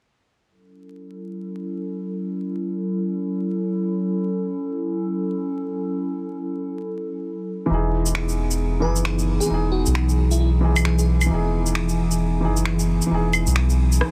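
A warbling, detuned tape-like pad with chorus and lo-fi 12-bit sampler grit opens this melancholic, rainy future garage excerpt at 133 BPM in F# dorian, holding F#m7 until a soft, felt-muted upright piano with tape echo and a round, deep sub bass arrive on Emaj7 at 7.7 s, followed at 8.1 s by layered, overdriven electronic shaker, finger snaps, claves and rim click swinging on 16ths, while a bell-like, sparkling FM electric piano melody with chorus and tape echo sits in the background from 8.8 to 11.0 s, the whole track framed by vinyl crackle and a dense, heavily limited master.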